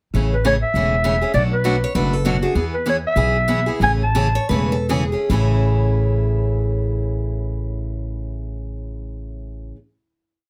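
Acoustic string swing in the jazz manouche style, charming and playful at 140-200 BPM in A major, opens with a boxy parlour rhythm guitar playing four to the bar, short and accented on two and four, and a woody, thumpy gut-string upright bass plucking two-beat roots and fifths, while an up-front, raspy, growling clarinet with light vibrato and scooped notes sings short song-like motifs until 4.5 seconds, a second bright picked guitar with finger squeak slips answering phrases into the melody's rests from 1.8 seconds, and the tempo slows into a final chord held from 5.3 seconds, caught by close, detailed microphones with light reverb.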